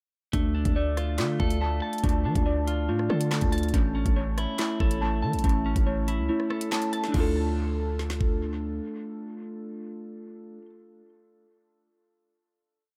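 An echo-heavy mix with little reverb gives this short drill piece a dry, cold and ominous air, set in D harmonic minor at 141 BPM with a half-time feel. A clean, compressed electric guitar picks a pedal-note arpeggio in eighths, repeated like a sampled loop and treated with spring reverb and dub echo, while muted, felt-like synth keys add a dark, intimate arpeggio in quarters, softened by chorus and dub echo. Up front, a punchy, heavy 808-style bass plays long sub-bass notes that follow the kick, with pitch slides. The electronic drill kit knocks with a woody snare layered with handclaps, metallic skipping hi-hats with fast rolls, rim clicks and crash cymbal, its dub echo adding trails. The hook moves from Dm to A, the kick drops out between 6.3 and 7.1 s, and at 7.1 s the piece settles on a final Dm chord that the guitar and keys carry until 10.7 s.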